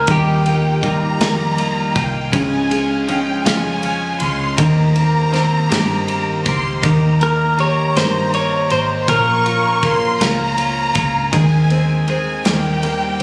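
Heartfelt and swaying, this slow six-eight pop ballad moves at 53 BPM over a felt-muted upright piano with mellow tone and audible action noise, a bright, twangy twelve-string electric guitar picking arpeggios through spring reverb and digital delay, a dark, round muted electric bass, and a modern drum kit with a punchy kick, medium-tuned snare and ride cymbal. A lush violin section carries an expressive second line with vibrato high above, while an up-front, direct-recorded clean electric guitar plays the melody with digital delay, stepping away at 1.6 seconds and returning from 7.2 to 10.5 seconds. The sound sits in a moderate recital-hall reverb with small-room ambience, captured on a phone in the room, and the passage is cut from a longer piece.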